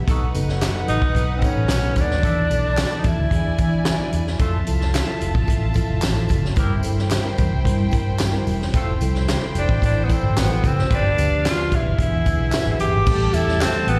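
A soft-edged bowed violin section opens this urgent, passionate snippet of uptempo 1960s-style soul at 111 BPM. It is quickly joined by a bright, punchy horn section, a reedy electric piano with fast tremolo, a dark, round, foam-muted fingered bass sitting up front, a vintage drum kit with fat snare and dark cymbals, and tambourine and handclaps in the background, with slapback echo on the strings, horns and piano. A breathy, whispered tenor saxophone carries the melody with vibrato and scooped notes from 0.9 to 4.1 seconds and again from 9.6 seconds, over chords moving from B7 through Fmaj7 and G7 to Am7, all heard through a venue's PA with recital hall reverb.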